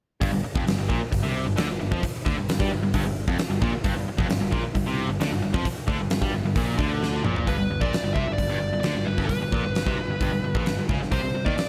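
This is a short excerpt of powerful, anthemic hard rock in a straight 4/4 at 132 BPM, opening at 0.2 seconds with guitar, bass and drums together. A huge arena drum kit sits up front with a fat snare, punchy kick, hi-hat and toms, its hall sound carrying a pumping room character. A bright, double-tracked overdriven electric guitar drives the riff in its low register, while a picked electric bass, growly and punchy, holds down the bottom with a direct-and-amped tone. The harmony opens on a G5 power chord, and a drum fill at 7.0 seconds leads into a new section where a dark, smooth lead guitar enters at 7.5 seconds with an overdriven melody over a G chord. The passage moves to a C5 near the end, and light reverb gives the mix a sense of space.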